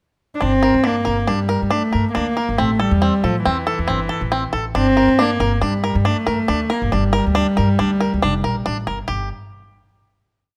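A warm, bowed cello carries a pensive, urgent motif-based melody in soft sul tasto tones from 0.3 s, over a twangy, fingerpicked bluegrass banjo ostinato and a woody, pizzicato upright bass riff, in a brief contemporary chamber piece in 5/4 at 139 BPM in G dorian, moving between Gm and Am7 with light reverb and close, detailed sound before a final note from 9.1 s.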